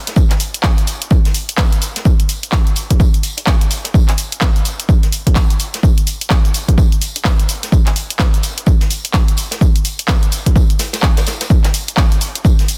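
A swung sixteenth-note house groove with a swaggering, gritty mood drives this short drums-only cut from a longer piece, led by a punchy, layered electronic kick re-recorded in a small room and placed up front, while a tape-warm garage kit adds cabasa, handclaps and hi-hat, and a jazz brush kit sits in the background with brushed hi-hat, tambourine and a medium-tuned snare roughened by soft clipping and thinned by high-pass filtering, all within small-room ambience and a dense, heavily limited modern master.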